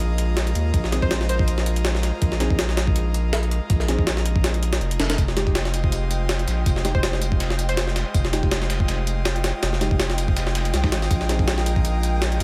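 A pitched-up, gritty jungle break with a thumpy kick and high-tuned snare drives this frenetic, raw drum and bass cut at 162 BPM in F minor, pushed up front alongside a thick, saturated sub bass. An airy, breathy pad with chorus sustains chords from Bb7sus4 to Fm7, while a deep, nasal chord stab sits back through cassette tape and dub echo, and a glassy wavetable pluck flickers briefly on C5 around 1.0 and 6.9 seconds. From 5.2 seconds a fat-snared soul kit with tambourine joins in the background from a large room, and from 5.4 seconds a dark, wind-like tuned noise texture hovers high on G5, all within a digital ambience.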